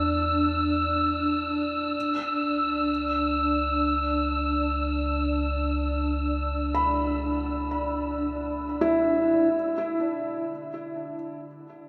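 Bathed in a vast, echoing cathedral reverb, this luminous ambient fragment cut from a longer piece sets intimate felt-muted upright piano arpeggios, mellow and up front with audible action noise and delay, over a nasal organ-like drone thickened by ensemble chorus, a deep, ominous rumbling bass drone and an airy, breathy wind-like tuned noise texture, the latter two stopping at around 9.5 and 9.6 seconds as the harmony moves from Dsus2/E through C#m7 to settle on Dsus2.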